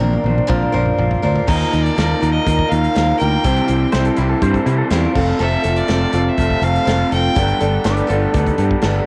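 A dark, slightly broken-up electric guitar through a small old amp sits up front with a picked lo-fi riff in this hopeful, jangly folk rock and heartland rock excerpt, moving at 122 BPM in a straight 4/4. A natural country drum kit opens with a fill, its punchy kick and medium-tuned snare sounding airy and polished with a cassette-tape tint, while a round, direct fingered electric bass holds the low end close up. Behind them, a boxy parlour acoustic guitar picks bright accompaniment and a very quiet tonewheel organ holds clean, sustained chords through a slow rotary speaker. At 1.5 seconds a single intense fiddle enters with the melody, its airy bow and light vibrato carried on tape echo, and it plays until 7.8 seconds. A warm, compressed pedal steel guitar joins in the background at 3.9 seconds with a clean second line of slide and volume swells, as the harmony moves from Ebsus2 through C and F to Gadd9. 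The whole home cassette recording has a light reverb and small-room ambience.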